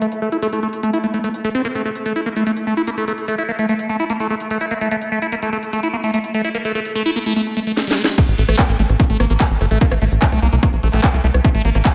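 Psychedelic trance at 147 BPM in A phrygian, alien and driving, where a squelchy, resonant acid bass riff with phaser, delay and sidechain pumping sweeps through its filter over overdriven techno drums with a cracking snare and smooth hats until a drum fill at 7.8 seconds leads into the drop at 8.2 seconds, when a punchy, tape-warm kick and a tight, dark sequencer bass arrive up front in a dreamy mix soaked in hall reverb.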